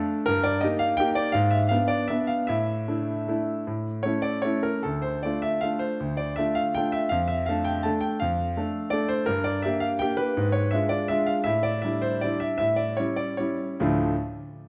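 A dark production places a clear, smooth grand piano up front in a moderate recital hall reverb, its tone vintage in character with a short sustain. This solo classical piano waltz in D minor moves in 3/4 with a rubato feel between 137 and 173 BPM, spanning D2 to A5 in a nostalgic, bittersweet mood as the harmony passes from Eb/G through G#dim and Asus4 toward Dm, Gm and G#dim7. Cut from a longer piece, the passage slows from 10.9 seconds and settles through A7sus4 and A7 onto Dm at 13.8 seconds.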